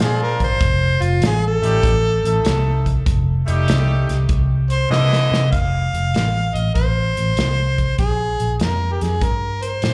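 A clear, close-miked harmonica with light vibrato and scooped notes takes a jazz-style solo up front with overdrive and slapback echo, opening this soulful, rollicking electric blues shuffle at 98 BPM in F mixolydian. Bright, tight horn stabs with octave doubling carry slapback echo and analog delay up to the new section at 5.5 s, which a drum fill from 4.9 s leads into, while a dark, round, foam-muted vintage bass and an acoustic country drum kit with a punchy kick drive the swing, all heard through a club PA with club reverb.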